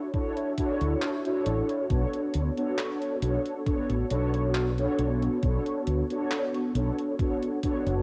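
A lightly reverberant home cassette recording with its top end dulled carries this faded, woozy vaporwave fragment at 68 BPM in 4/4, where mellow, brassy, full-bodied synth brass with a detuned sawtooth edge, filter sweep, chorus and vibrato sits up front through cassette tape and analog delay effects, an overdriven, thumpy electronic kick and a detuned 8-bit drum machine's handclaps and hi-hat, both sampler-style and re-recorded in a small room, come in at 0.1 s, and a dark, round, direct fretless electric bass with tube saturation joins at 0.8 s as the harmony moves from Dmaj7 to Bm9 at 1.9 s.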